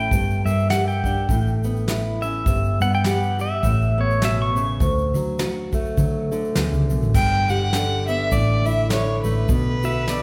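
This short cut from a longer acoustic folk piece opens with a clean, up-front pedal steel guitar carrying a solo over fingerpicked steel-string acoustic guitar and a dark, round hollow-body electric bass, setting a peaceful, hopeful mood at 102 BPM in 4/4 with a gentle swing on the eighths. A soft brush kit with a punchy kick and medium-tuned snare joins at 0.1 seconds, and a grainy tube shaker sits far in the background. The pedal steel, played with fingerpicks and volume swells, stops at 4.9 seconds as the harmony moves from G minor through A add9 and G6 toward D. At 7.2 seconds a nasal, earthy fiddle with light vibrato takes the melody, bowed by a single player, over chords of G, A sus4 and B minor, and the steel returns briefly near the end. The whole band sounds as if captured in a church or concert hall, with a long, lush reverb tail.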